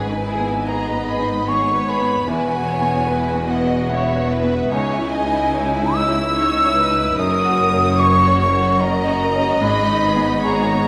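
This cinematic passage, cut from a longer piece, opens with the full ensemble sounding together in a rubato waltz-time feel, its mood longing and sorrowful. A warm violin section carries the melody with soft-attacked, expressive vibrato, though it sits in the background. Above it a pure, hollow concert flute sings a mellow second line, joined by a second violin section that sounds distant and even. A clear, intimate baby grand piano, its action noise audible, accompanies alongside an intense viola section with a smooth top. A very quiet concert harp adds ringing fingerpicked arpeggios, while the low end pairs a bright, focused double bass section with a rich cello section heard distantly in the background. The lush bowed strings sit in moderate scoring-stage reverb over a progression that moves from G#m through Esus2, C#madd9 and F# before returning to G#m near 9.6 seconds.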